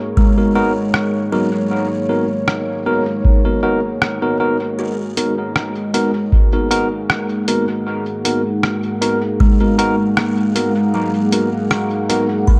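A deep, tape-warm electronic kick sits up front in this hazy ambient dub excerpt at 78 BPM in G# minor, joined at 0.9 seconds by a muffled, pitched-down sampler-style kit of hi-hat and rim click soaked in dub echo. A buzzing, woody kalimba plays echoing arpeggios and a clean, bright tine electric piano adds stabs over a dark, warbling pad holding a sustained G#m7 chord with chorus. Underneath, a very quiet bubbling texture of resonant random filter steps drifts through a moderate spring reverb in an echo-heavy mix.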